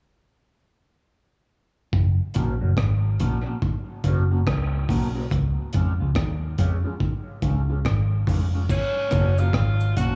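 A small room's ambience frames this laid-back, spacious dub reggae cut, taken from a longer piece and moving at 71 BPM in 4/4 with a swung sixteenth-note feel in F# major. A dark, saturated breakbeat kit with a punchy kick, dark cymbals, hi-hat and rim clicks sits up front beside a round, foam-muted vintage electric bass. Both enter at 1.9 seconds on F#, with the harmony shifting to C# at 5.3 seconds. Just after their entry, a fingered electric guitar at the edge of break-up adds dark, slightly broken-up accompaniment soaked in phaser and dub echo. At 8.7 seconds the harmony returns to F# as a clear tenor saxophone arrives with a distant, light-vibrato melody trailed by its own dub echo, while a compressed cabasa shuffles quietly in the background.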